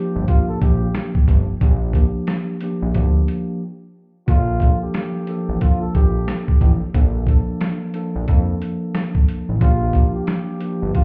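A swung, gritty boom-bap groove drives this reflective hip-hop excerpt, its compressed, pitched-down sampler drums sitting up front with a thumpy kick, medium-tuned snare, rim clicks and hi-hat, and the groove opens into a brief break between 3.6 and 4.3 seconds. A fat, nasal analog bass with a plucky filter and sustained notes anchors the low end, while a mellow, clean tine electric piano holds the Gm7 and Bbmaj7 chords. Over them, a dark, breathy bucket-muted trumpet plays a veiled, jazz-style solo with scooped notes and soft attacks, its line trailed by delay, and the whole mix sounds muffled through a wall into club reverb.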